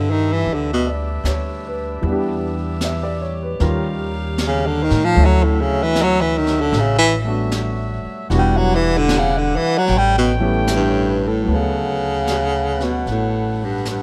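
Intimate and tender, this jazz ballad moves at a slow 76 BPM in 4/4 with a swung eighth-note feel, set in D major and taken from a longer piece. A breathy, close-miked baritone saxophone carries the melody up front with vibrato, playing a solo through the first 11.5 seconds before the music shifts into a new section. Beneath it, a baby grand piano comps with a natural, short-sustained tone and audible action noise, while a mellow saxophone section holds soft-attack chords with light vibrato and a smooth top. The pizzicato upright bass sounds woody and dark, sitting up front in the mix. A distant, roomy brush kit enters at 0.5 seconds with a high-tuned snare and hi-hat under a rolled-off top, and light reverb gives the whole a gentle sense of space as the harmony drifts from G6 through Em7, Eb9 and Dmaj9 to settle on D6.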